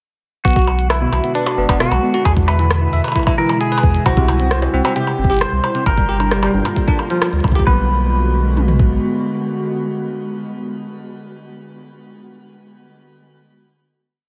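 An eerie, glitchy IDM piece starts at 0.4 seconds with its full groove: a broken pattern of deep kick and toms, an ever-changing glitched beat of clicky hats, bongo blips and rim clicks, and a round sine sub bass skipping in syncopation up front, all beneath a glassy FM pad's slow-blooming, ethereal chords. A bell-like tine electric piano repeats a 14-step loop that drifts against the bar, while a twangy, picked clean electric guitar plays motif-based phrases through tape echo and shimmer reverb, and from 4.1 seconds a pulsing, detuned triangle texture holds a high note in the background. After a band accent at 7.2 seconds, the groove gives way to a final chord at 7.7 seconds, with the guitar and pad ringing on in digital ambience.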